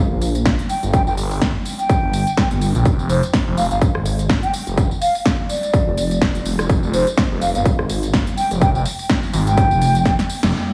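Bass house at 125 BPM with a swung sixteenth feel, this aggressive, swaggering cut moves from G minor to F minor as a thick, swirling detuned saw bass, phased, overdriven and pumping against the sidechain, sits up front from the start. A punchy overdriven electronic kick and a layered dance kit of crisp hats, rim clicks, snare and tambourine drive it, while an airy, hollow concert flute with vibrato floats above through a diffuse ambient delay. The dreamy mix is soaked in lush hall reverb, and a drum fill at 10.1 seconds leads into a band accent at 10.4 seconds.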